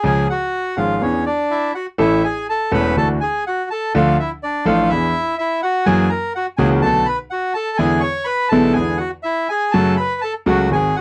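A dry, close recording with a light touch of reverb and a 1970s studio character frames this brief, playful and nostalgic tango cut from a longer piece. It moves at 124 BPM in 4/4 with a rubato feel, centred in A major. The bandoneon carries the melody up front, its reedy, airy voice ranging from C#4 to C#6. Beneath it, a concert grand piano supplies the accompaniment, sounding brilliant and smooth with a vintage glow and a deep bass that reaches down to E1. After a short opening that lands on A at 2.0 seconds, the harmony wanders through Dadd9, Dm, E7, F#7 and Bm7 before settling on F#m near 9.7 seconds, and both instruments play together to the end at about 11 seconds.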